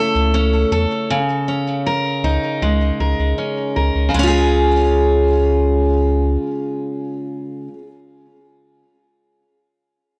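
Playful and pastoral, this folktronica excerpt in Db major moves at a straight 79 BPM in 4/4, tuned to A4 = 445 Hz, with an up-front, bright, full-bodied picked steel-string acoustic guitar playing arpeggios (finger squeak audible) through a low-pass filter and digital delay over chords moving from A to Absus2/Db and settling on Db at 4.1 s, while a deep, round sine sub bass with tube saturation sustains beneath until 6.4 s, all set in a moderate studio reverb.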